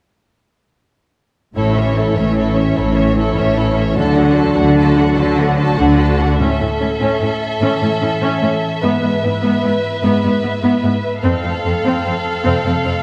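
A rich, lush violin section carries the soaring melody over a second violin line, with warm, expressive violas gliding in portamento beneath them, in this triumphant cinematic excerpt in A major at 99 BPM in 12/8. Clear, focused cellos and up-front double basses anchor the bass while a dark, distant French horn section holds very quiet sustained chords, and a ringing, fingerpicked concert harp spins arpeggios in the background. The horns and basses drop out around 6.3 seconds as the music builds through to 13.0 seconds, moving from A and D to E/G# and F in a moderate concert hall reverb.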